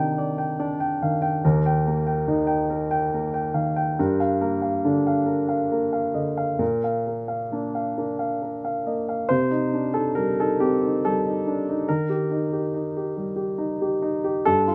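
Melancholic and reflective, this neoclassical minimalist piano piece moves at 70 BPM in 3/4 with a rubato feel, centered in C dorian and tuned slightly low to A4 = 436 Hz. A baby grand piano plays alone from start to finish across the full 14.7 seconds, spanning Eb2 to G5. Its tone is present and polished, with short sustain, and it sits up front in a light reverb. The harmony moves from Cmadd9 through Eb, Gm7 and Bb, then a second section beginning at 9.3 seconds returns to Cmadd9 and Eb. The passage is cut from a longer piece.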